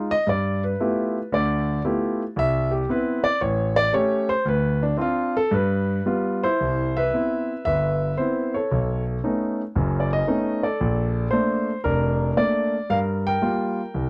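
Swung eighths in 4/4 loosened by rubato carry this sophisticated, swinging solo jazz passage, cut from a longer piece, where a warm concert grand piano with a deep bass register and natural, up-front presence moves through G13, Cmaj7, A7, Dm7 and G7 before returning to Cmaj7 at 6.6 seconds and heading on toward B9, Bbmaj7 and Gm7, all captured in a dry, close 1970s-style studio sound.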